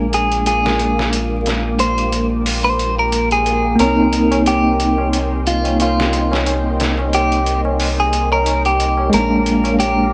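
A clean, scooped electric guitar sits up front in this melancholic, brooding trip hop excerpt, carrying the melody through harmonic tremolo and dub echo over a tine electric piano whose tremolo accompaniment runs through a combo amp. Dark string-machine cellos hold slow-attack chords with phaser, ensemble chorus, 12-bit sampler grit and a filter sweep, while a round, deep analog bass with tube saturation anchors the Bb7 to Cm7 movement. A gritty, pitched-down sampler kit of hi-hat and snare plays with a swung feel, a low-tuned, ringing tabla joins in the background at 3.8 seconds, and vinyl crackle and light reverb surround the whole mix.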